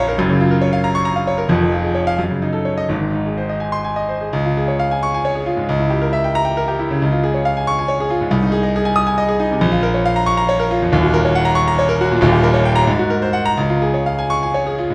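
A wet recital-hall reverb surrounds a clear, up-front concert grand with a deep, smooth bass in this sparkling, heroic classical virtuoso piano study, played solo in 6/8 with free rubato, moving from a brief opening passage into a second section at 4.3 seconds that passes through rich harmonies like Dbdim7 and Ab9 before resolving on Db as this fragment of a longer piece closes.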